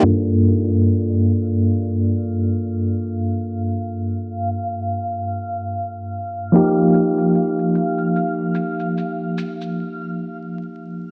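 A bell-like, bright tine electric piano opens this smoky, dark trip hop excerpt, its clean, up-front chords shimmering with harmonic tremolo, vintage 12-bit sampler grit and tape echo, while a reversed, dreamy granular texture hangs softly above it. Maracas with a group handclap enter close and dry at 6.5 seconds as the harmony moves from Gm9 to F7sus4, all over a swung 16th-note feel. Vinyl crackle and a low-pass filter sweep colour the sound throughout, and a brief break arrives at 9.8 seconds, when the reversed texture falls away and the electric piano carries on alone.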